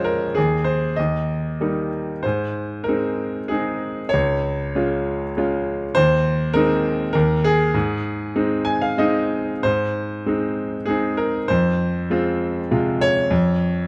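Classical solo piano in Ab major, lyrical and hopeful, moving in a rubato 3/4 at roughly 89-103 BPM across this short excerpt cut from a longer piece. A clear, slightly boxy grand piano sits up front with short sustain, heard through close, detailed microphones and light reverb, ranging from Db2 to Ab5 as the harmony passes through Eb, Ab and Db. A brief piano fill from 8.4 to 9.7 seconds leads into a new section, where the chords turn to Fm before settling on Db/F near the end.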